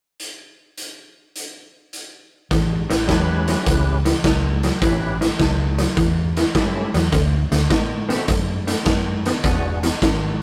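A swung 104 BPM electric blues shuffle in A mixolydian, gritty and laid-back, opens with a raw, boomy, up-front garage drum kit of hi-hat, kick and snare pumping in a bright stone room, before a slightly broken-up, lo-fi electric guitar riff and a dark, round, foam-muted fingered bass enter at 2.5 seconds over A7, joined at 3.1 seconds by a fat, percussive tonewheel organ with key click, light overdrive, chorus vibrato and a slow rotary speaker, moving through D7 to E7 in this saturated rehearsal-room excerpt.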